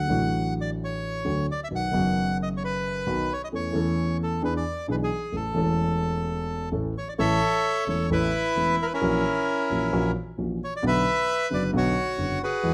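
A reedy bandoneon carries the melody up front throughout this short tango passage, cut from a longer piece, its tone warm and close in a light reverb with detailed microphones. Beneath it, a dark concert grand piano provides the accompaniment, mellow and smooth with a deep bass, a vintage character and short sustain, also placed up front. The mood is playful and elegant, set at 132 BPM in 4/4 with a rubato feel in A major, tuned to A4 = 442 Hz. The harmony moves from D through B and A/E to E7, settling on A at 5.3 seconds before the phrase repeats at 7.2 seconds and turns toward F#7/A# and Bm near the close at 12.7 seconds.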